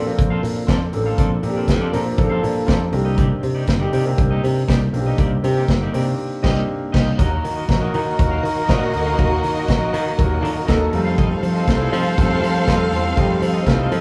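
A clean electric guitar sitting in the background and a natural-toned grand piano open this joyful, danceable disco cut alongside a growly, bright fingered electric bass, with a punchy, up-front vintage drum kit with dark cymbals joining at 0.2 s and the band hitting an accent at 6.2 s, before a lush, expressive bowed violin section and a mellow, vintage horn section playing stabs enter at 7.2 s, the group captured as if live in one room under a large studio reverb.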